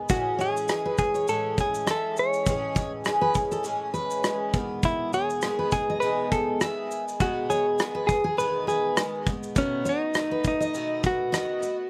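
A picked steel-string acoustic guitar opens this easy-going acoustic pop excerpt in E major, its double-tracked accompaniment carrying a slapback echo and an auditorium-sized body. At 0.1 seconds, a clean, direct-recorded electric guitar takes the melody with a compressed, scooped tone, a vibrato effect and its own slapback echo. It sits up front alongside a loose indie drum kit of tight kick, rim click and shaker, heard in a small, pumping room. From 0.4 seconds a second picked acoustic guitar, jumbo-bodied with fresh strings and a full sound, adds arpeggios that also carry slapback echo. The carefree groove moves at 101 BPM in 4/4 with a light sixteenth-note swing, while the harmony moves from Amaj7 to Emaj7 and reaches B7 near the end. The overall sound is dry and close, with little reverb.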